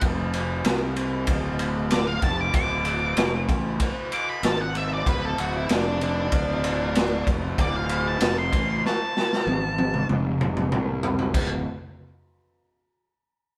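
A straight 4/4 groove at 95 BPM drives this gritty, swaggering slice of blues rock power trio and southern rock, cut from a longer piece. The raw garage drum kit sits up front in a pumping small room, with a boomy kick, a medium-tuned snare, crash and ride cymbals, toms, and a saturated sound with a rolled-off top end. Underneath, the fingered electric bass growls low, its overdriven tone bright and punchy and placed close to the listener. The octave-fuzz lead guitar takes a dark, picked solo from the start, ranging from D4 to D6 before it stops at 10.1 seconds, while a drum fill runs from 8.8 seconds. The trio plays live together in one space, wrapped in a moderate stone room reverb.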